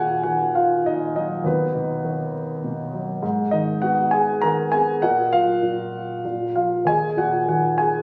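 Captured on a phone in a concert hall with moderate reverb, this brief lyrical classical fragment from a longer work features a dark, mellow solo concert grand piano with deep bass, placed up front and moving through brooding, cool minor harmonies in a rubato three-four over its 8 seconds.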